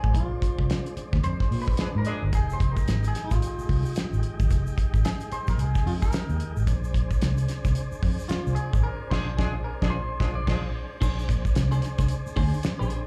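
A clean, twangy electric guitar solo with slapback echo opens this driving, cool funk groove, swung on the sixteenths over Bb9 and Fm7 chords, backed by a smooth tonewheel organ through a slow rotary speaker, a dark, round, foam-muted fingered bass and a dry, damped 70s kit with a fat snare and tight kick up front, while a mellow, distant horn section in octaves joins the band accents at 1.8 s and 9.1 s, a grainy tube shaker enters far in the background at 2.3 s, and the whole performance is heard live through a club's PA.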